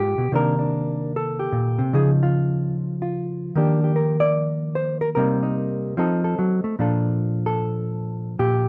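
Solo jazz at 149 BPM in 4/4, with a swung eighth-note feel and a playful, warm mood in B-flat major. A single electric hollow-body jazz guitar carries the whole 8.7-second passage, fingered and clean, sitting up front and ranging from Ab2 to D5. Its tone is dark, framed by light reverb in a dark, warm production. The harmony moves through rich extended chords, Cm9, Dbadd9 and Ebmaj9, before a quicker turn of Cm7 and F7b9 settles onto Bbmaj7 at 6.8 seconds. Cut from a longer piece, it feels like a warm, playful phrase.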